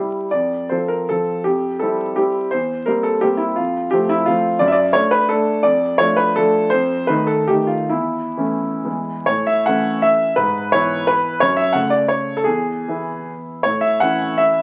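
Rustic and graceful, this romantic classical dance in 3/4 moves with dotted rhythms and free rubato between 123 and 185 BPM, its solo grand piano sounding smooth, vintage and up front in a moderate studio reverb beneath the crackle of a very old 78 rpm record, as the harmony turns from F major to A major at 4.6 s before the piece is cut off at 14.6 s.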